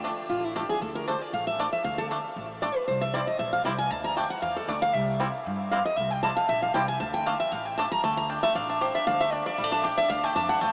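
Bluegrass in a lonesome, haunting D minor at a racing 232 BPM with a light swing, this excerpt pairs a bright, twangy fingerpicked banjo melody and a woody, thumpy pizzicato upright bass from the first moment, while a full-bodied, up-front picked dreadnought guitar takes a solo from 0.3 seconds over D5 and C chords settling onto Dm, the whole piece sounding as if played through a small speaker in a vast, echoing space drenched in huge reverb.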